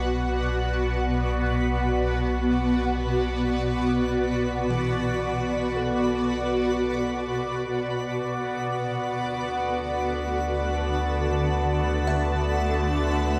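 Bathed in a huge, wet reverb, this reflective, melancholic ambient excerpt in free time and B minor sets a bright, ethereal shimmering pad up front over a dark, rumbling drone, while a woody, buzzing kalimba fades in with arpeggios and a sparkling granular texture fades in behind it, before a reedy, breathing pedal harmonium drone enters at 8.4 s as the harmony moves from Bm to D.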